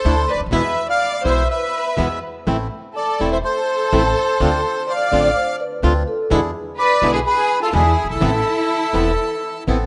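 A reedy, dark bandoneon carries the melody up front from the start over a lush, distant bowed violin section with vibrato and a soft attack and a woody, thumpy pizzicato upright bass on gut strings, while a bright fingerpicked flamenco guitar with audible finger squeak and close-miked, dry bandoneon stabs fill in beneath, and a mellow, ringing soft-mallet vibraphone surfaces briefly between 5.4 and 6.6 seconds, giving this passionate, dramatic rubato tango in A minor at 125 BPM a moody pull through its chords from Dsus2 to Amadd9, all set in a moderate plate reverb within a rough home demo mix.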